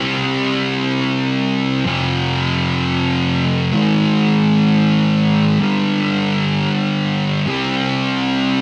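A thick, fuzz-drenched electric guitar plays alone from the first moment, its picked, double-tracked power chords sitting up front in a dreamy, hazy rock fragment cut from a longer piece. In free time it moves from C5 to F5, Ab5 and G5 before settling back on C5 at 7.5 seconds, the distortion softened by a shimmer of analog chorus. A light reverb gives the heavy, woolly tone a hint of air around its edges.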